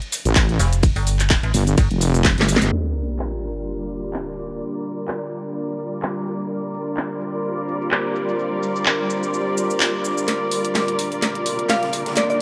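A swung 127 BPM bass house groove in G minor struts with a bouncy, swaggering feel as a cracking garage kit with handclaps, shaker and ride drives the drop under a tight electronic kick, a saturated wobble bass and a metallic FM bass, joined by a very quiet crisp fusion kit, before a sub drop at 2.7 seconds opens onto a deep, moody pad and veiled, muted strings through a filter sweep, building from 10.3 seconds with a riser as a soft, warbling synth bell enters at 11.7 seconds in this short excerpt from a longer piece.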